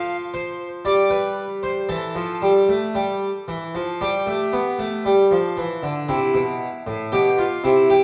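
This is a classical, baroque-style two-part invention for solo harpsichord in C major, lively and joyful in mood, moving at an unhurried 58 BPM in a straight 4/4. The harpsichord is a French-style instrument with two sets of strings, and its plucked tone is full. It spans from A2 up to F5 and sits up front, while a wet stone-room reverb with a 1.3-second tail lends the sense of hearing it from further back in the room. The harmony moves from Dm/F through Emadd11 to G, then arrives on C at 6.1 seconds, where a new section begins and runs to the 8.0-second mark. It is a short passage cut from a longer piece.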